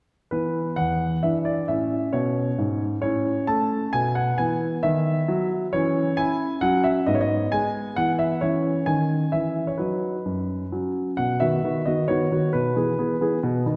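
Cheerful and elegant, this short classical-period piano sonatina moves in a graceful triple metre with a straight feel. A single warm concert grand carries the whole piece as a solo, playing from 0.3 s to 13.8 s across a range from E2 up to A5. Its tone is natural and up front, with a deep bass anchoring the lower register. The harmony opens around E and A, then shifts toward B from 5.7 s, passing through C#m and G#m colours before settling on B and closing on E/B. A new section begins at 11.2 s, and the passage is cut from a longer piece. The piano sits in a generous scoring-stage reverb that gives it a roomy, lingering tail.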